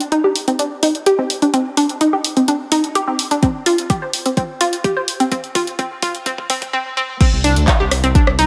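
Opening this bittersweet, emotional progressive house excerpt in C minor at 127 BPM, a deep house drum kit of crash cymbal, handclaps, rim click and dark hi-hats sits beneath a bright, round, detuned analog pluck arpeggio with chorus, dub echo, sidechain pumping and a filter sweep over Cmadd9 and Fsus2 chords, while a deep, up-front electronic kick enters with a drum fill at 3.4 s before the drop at 7.2 s brings in a rumbling, saturated detuned saw bass at 7.3 s, inside a lush hall reverb.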